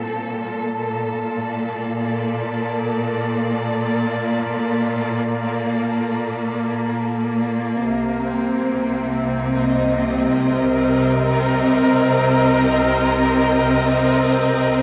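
Ambient music in free time, warm and serene, cut from a longer piece. A clear, focused string section sits up front, holding bowed chords with vibrato that move from Bbmaj7 to Cm7 at 7.8 s, coloured by cassette tape character and a shimmer reverb. A very quiet, woody kalimba adds short, dry, close-miked arpeggios at the opening and again from 9.7 s, its thumbnail plucks sounding full despite their low level. At 7.8 s a lush double bass section enters on a low C, bowed smoothly and evenly with vibrato beneath the strings. The whole is bathed in a wet spring reverb and carries the character of a home recording on cassette.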